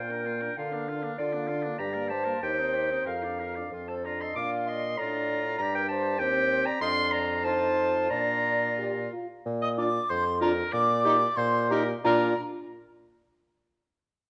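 Spirited and cheerful, this short cut from a quick classical-period wind quintet movement in Bb major moves in a rubato 2/4 at 86-100 BPM, with a pure, crisp-attacked silver concert flute carrying the expressive, vibrato-laden melody over a clear oboe second line, an up-front clarinet and a warm French horn in accompaniment, and a mellow, smooth-topped bassoon on the bass, the ensemble set in a wet recital hall with a dark production.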